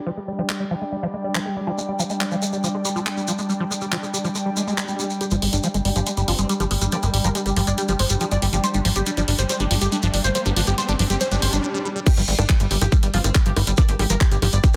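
Psychedelic trance at 140 BPM with an alien, hypnotic mood, this excerpt opens on an evolving wavetable pad and an airy, breathy pad pumping under sidechain, a squelchy acid bass riff with a phaser and filter sweep, a garage kit of bongos, handclaps, crash and hi-hat, and a grainy shekere, before a thick, detuned unison lead and a punchy plucky analog bass join at 5.2 s, with a very quiet formant-sweep wobble bass following at 6.3 s, for a build-up with risers and a brief break, landing at 12.1 s on a drop driven by a tight, up-front electronic kick in a dense, heavily limited mix.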